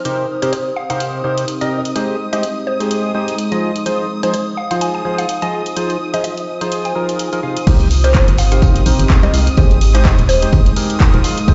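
A hollow, percussive organ stab riff with sidechain pumping drives this energetic, soulful piano house clip in F minor at 126 BPM, over shimmering string-machine violins under a filter sweep, a deep, moody ambient pad, a punchy analog drum machine with crash, handclaps and hi-hat, and a woody, mallet-like synth pluck melody with phaser and tape echo, until the drop at 7.7 seconds brings in an organ-like FM bass, an electronic kick and a very quiet, dry soul drum kit with snare and tambourine, heard in a stone room with a muffled top end.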